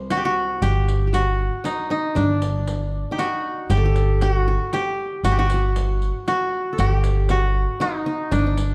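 In a straight 3/4 at 117 BPM, this melancholic, longing Arabic maqam ensemble excerpt sets an up-front, woody koto melody over a bright-edged qanun second line in the background, with a riq of bright jingles entering at 0.1 seconds, a bowed, earthy cello section drone lasting until 0.7 seconds, and a thumpy pizzicato upright bass entering at 0.6 seconds, all in a dark production with light reverb.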